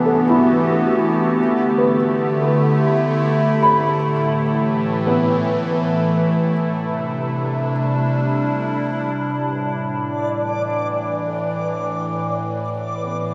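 Ambient and free in time, this spacious, melancholic passage from a longer piece in A minor sets an up-front, detuned, warbling wavetable pad with chorus on sustained chords moving from Emadd9 through Dsus24, Asus2 and Cmaj9 back to Asus2, while a soft felt-muted upright piano plays intimate, mellow arpeggios through analog delay, a nasal, tense bowed-like drone with vibrato hums beneath, and at 9.7 seconds a reversed, dreamy granular texture enters, the whole echo-heavy mix steeped in a wet spring reverb.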